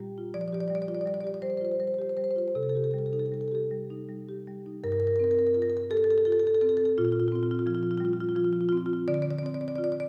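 In a rubato, flowing 6/8, this reflective contemporary classical excerpt for solo marimba has woody rosewood bars struck with medium mallets sounding up front across a range from G2 to D5, drifting through suspended and extended minor harmonies inside a wet recital-hall reverb heard from further back in the room, with a second section opening at 4.8 seconds.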